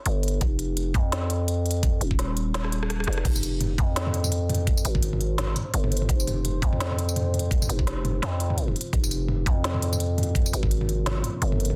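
Spacious and dark, this half-time drum and bass excerpt rides a swung feel, with a growling, buzzy 808-style bass and a knocking, layered electronic kick sitting up front. An overdriven organic electronic drum kit brings a woody snare, crisp hats, rim clicks, tambourine, toms and crash cymbal, and breaks into a fill at 2.5 seconds while the kick briefly drops out. From 5.3 seconds a deep, moody sawtooth pad with chorus, reverb and sidechain pumping sustains chords in the background of a dense, heavily limited modern master.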